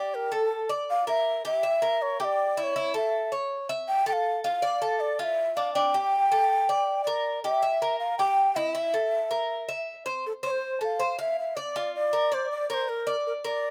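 Latin music at 160 BPM in a straight 4/4, this short excerpt carries a warm, nostalgic mood. A breathy, mellow bansuri carries the melody between A4 and G5 throughout, its bamboo tone marked by vibrato, a crisp attack and an unsteady line. Beneath it, a Cuban tres plays picked arpeggios from D4 to F5, its bright, metallic double strings, some doubled at the octave, ringing close to the listener. Both parts sit up front in a dry, open-air sound with little reverb. The harmony moves through Gmadd9, Edim, A and Dm before a shift near 10.2 seconds brings a new passage built on F and Bb.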